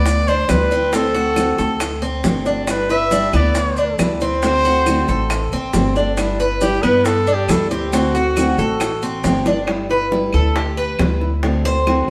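Warm and danceable, this fragment of Cuban son and guajira sets a breathy, whispered trumpet melody with vibrato up front over a bright fingerpicked nylon-string guitar, metallic double-strung tres arpeggios, and a dark, thumpy pizzicato upright bass, while round low-tuned bongos, woody claves and grainy maracas sit in the background of a live stone-room sound, until the trumpet drops out at 9.2 seconds and a drum fill at 9.5 seconds hands the closing stretch to a tres solo from 9.7 seconds.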